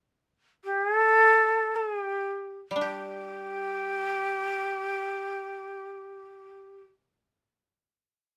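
A breathy shakuhachi opens this still, solitary fragment of Japanese chamber music at 0.6 s, its end-blown bamboo tone carrying a crisp chiff at each attack as the unmetered line slows through the opening seconds. At 2.7 s a bright, woody koto enters beneath it, plucked with fingerpicks in a lower register. Light reverb gives the pair a quiet sense of space.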